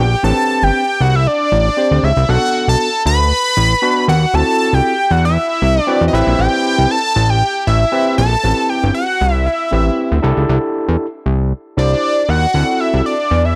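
Late-night and danceable, this early-eighties boogie funk excerpt moves at 117 BPM in a straight 4/4, centred on A dorian with chords drifting from Am11 through Bm7, a rootless D9 and Am9 before a C69 and D9 close it out. A thick, saturated sawtooth bass with a fast-attack filter pluck sits up front beneath a fat, detuned synth lead carrying the melody with a sub octave, vibrato and a phaser. An overdriven tine electric piano, barky and gritty through a combo amp, comps from 0.2 s to 13.1 s, all wrapped in a digital ambience.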